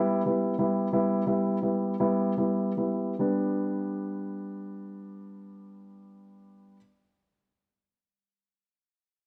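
Swaying and heartfelt, this short pop fragment, cut from a longer piece, moves in a slow 6/8 at roughly 46-62 beats per minute counted in dotted quarters, in G major with tuning set to A4 = 443 Hz. A concert grand piano carries the accompaniment alone from 0.0 to 6.8 s, staying in a compact middle range from G3 to E4. Its tone is dark and mellow with a deep bass weight, and it sits up front in the mix. The opening stretch on E minor slows down through its first 3.2 s before the harmony settles onto G at 3.2 s, marking the start of a new section. A moderate echo-chamber reverb with a 2.2-second decay wraps the instrument in a roomy, warm-toned production.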